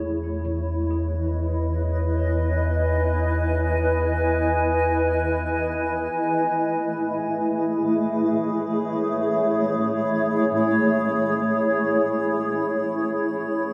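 A granular cloud pad and a round sine sub bass sound together from the start, the pad holding blurred, slowly blooming chords over the bass's deep E2. This serene ambient excerpt drifts in free time in A lydian, moving from Emaj7 to Amaj7 at 6.1 seconds and settling on E at 13.0 seconds. A filter sweep shapes the pad through the first 6.1 seconds, and the sub bass stops at that same point, so the pad carries the rest of the passage alone. Up front in the mix, the pad is a mellow, wave-folded triangle tone in unison, cloudy and evolving, with a long release and its own built-in reverb. A huge, wet ambient space with a 7.7-second reverb tail surrounds the music in a warm haze.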